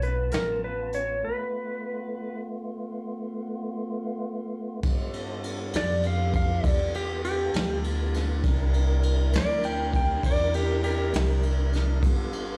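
Slow blues in 12/8 at 67 BPM with a straight feel in G mixolydian, this rollicking, gritty excerpt sets a dark, clean, compressed lap steel guitar melody with fingered slide and volume swells over a fat, key-clicking tonewheel organ turning through a slow rotary speaker. The woody pizzicato upright bass and the punchy, rolled-off brush kit sit up front in a small, pumping room. A break at 1.2 s gives way to a slide guitar solo from 4.8 s, where a mellow jazz saxophone section slips in behind on soft sustained chords, and the lap steel drops out at 11.4 s.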